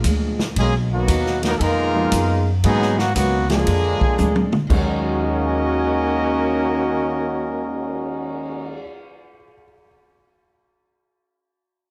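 Swinging and sultry, this big band swing excerpt in Eb minor at 116 BPM puts a mellow, up-front trumpet section on the melody from 0.6 seconds, with a tight, clear trombone section on the second line, a growly, woody pizzicato upright bass, a vintage drum kit with a punchy kick and rolled-off top that plays a fill at 4.2 seconds, a very quiet picked steel-string acoustic guitar with old strings, and an intimate baby grand piano sitting in the background from 1.9 seconds, all under light reverb.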